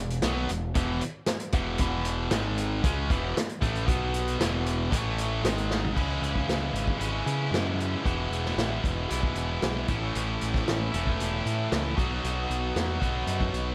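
Set in a small-room ambience, this confident, swaggering classic rock excerpt at 115 BPM in E major pairs a bright, double-tracked, overdriven electric guitar riff up front with a growling, punchy picked bass and a vintage acoustic drum kit with dark cymbals and a tight kick, moving from riffing on E5, G#5, B5 and A5 through a drum fill at 5.7 seconds into a C#m, E, A and B progression from 6.0 seconds.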